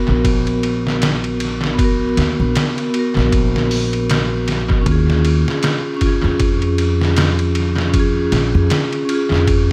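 Up front sits a compressed, pitched-down sampler-style drum kit, its muffled kick, medium-tuned snare, hi-hat and ride cymbal carrying a tape-warmed tone and a trail of tape echo. This smoky, brooding trip hop cut, taken from a longer piece, moves at an unhurried pace in four with a swung sixteenth-note feel. An upright bass, plucked pizzicato on steel strings, gives a woody, growly, thumpy low end beneath the beat. A close-miked vibraphone struck with medium hard mallets supplies metallic, ringing chords, colored by tremolo and tape echo, moving from G#m7 to D#7sus4 at 4.9 seconds, both voiced rootless. A light small-room reverb and vinyl crackle give the echo-heavy mix its dusky, lived-in atmosphere.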